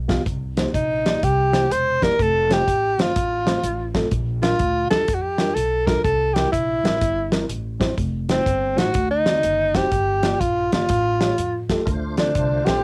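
Uplifting and hopeful, this uptempo gospel excerpt swings at 124 BPM, with a punchy, fat-snared country drum kit and a woody, thumpy pizzicato upright bass on gut strings driving underneath a mellow, clean tine electric piano that sits in the background. Up front, a breathy, whispered tenor saxophone carries the jazz-style solo melody with vibrato, soft attacks and scooped notes, and both the saxophone and the drums have a cassette-tape character in the moderate booth ambience of a home recording. At 11.9 s a full tonewheel organ joins with sustained chords through a slow rotary speaker and chorus vibrato, as the changes move from Cm7 to Dm7.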